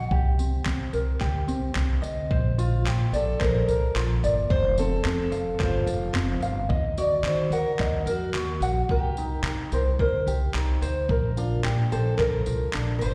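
This excerpt sounds like a live gig heard through the venue's PA, with a light recital-hall reverb around it. It is carefree, heartfelt acoustic pop in Bb major at 109 BPM in 4/4, with a 16th-note swing. A woody, dark upright bass, played pizzicato on steel strings, sits up front from the start. A light, thumb-plucked ukulele with slapback echo plays alongside it. A gritty, compressed sampler-style soul kit enters at 0.1 seconds, bringing a thumpy kick, handclaps and tambourine that were re-recorded in a large room. At 2.6 seconds a fingerpicked parlour steel-string guitar with fresh strings and slapback echo takes the melody over chords that move from Cm7 through Bbadd9, F and Ebm before returning to Cm7 and Bbadd9.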